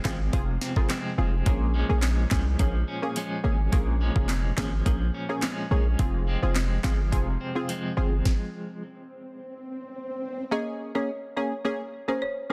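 Dancehall at 106 BPM, bouncy and hypnotic, built on knocking, overdriven electronic drums with handclaps, rim clicks and metallic hats, a heavy sine-based 808 bass, punchy detuned sawtooth chord stabs with chorus and sidechain pumping, and twangy, slightly broken-up guitar arpeggios with tremolo and tape echo over Fm and Bbm7, until a stop at 8.3 seconds makes room for an electronic swell before a dry, woody marimba melody enters at 10.5 seconds in a dense, heavily limited mix.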